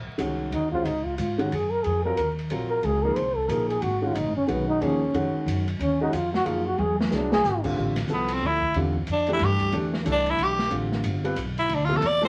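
A woody, thumpy upright bass opens this hypnotic, spiritual modal jazz waltz, joined almost at once by a natural-sounding baby grand piano and a dark, smooth acoustic drum kit with a boomy kick and rolled-off cymbals, set in moderate studio reverb with a layer of vinyl crackle. Up front, a breathy, whispered trombone takes the first solo with a soft, intimate attack. After a brief drum fill, the harmony shifts and a raspy, growling tenor saxophone with bright vibrato takes over at 8.1 s, running on until the recording cuts off mid-piece.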